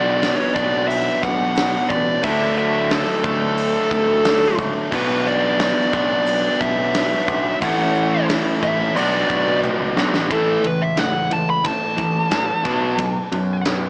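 This short clip, cut from a longer piece, has a small-speaker sound set in moderate studio reverb, giving a swaggering, brooding classic rock feel in a straight 4/4. Up front, a dark, smooth lead guitar with overdrive carries the melody, then breaks into a solo at 10.3 seconds as the harmony moves to A and closes on a B5. Behind it, a picked, distorted electric guitar and a driven semi-hollow guitar with a hollow-bodied tone play riffs in the background. A growling picked bass, direct and amped with its own overdrive, holds down the low end as the chords cycle through Bm, D and A. A gated 80s drum kit sounds big, airy and polished, with bright cymbals, a medium-tuned snare and a tight kick, and it plays a fill from 9.6 seconds. A grainy egg shaker sits very quietly, close and dry, and stops at 10.1 seconds.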